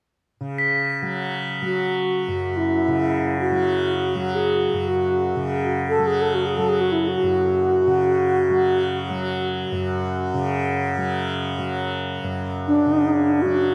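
Haunting and spacious, this free-time world meditation excerpt opens on a buzzing, softly plucked tanpura drone held up front, with bell-like crotales struck by plastic mallets ringing high until 8.3 s, while a bright, reedy low xiao enters at 1.7 s with a pure, straight-toned, tongued melody trailed by diffuse ambient delay, all set in a cathedral reverb with a 5.2 s decay and a dark, warm production.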